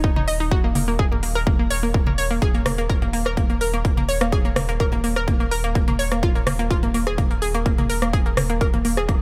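A straight 4/4 pulse at 126 BPM drives this dreamy, driving slice of progressive house, where a punchy, up-front electronic kick joins a round, deep analog bass on Eb1 and a bright, detuned analog pluck that arpeggiates between Bb3 and Eb5 through chorus, delay and sidechain pumping, while saturated congas and woodblock with hard hands sit in the background from 0.2 s and a big-room dance kit adds crisp hi-hats and rim clicks from 0.3 s, all set in a dry mix with little reverb.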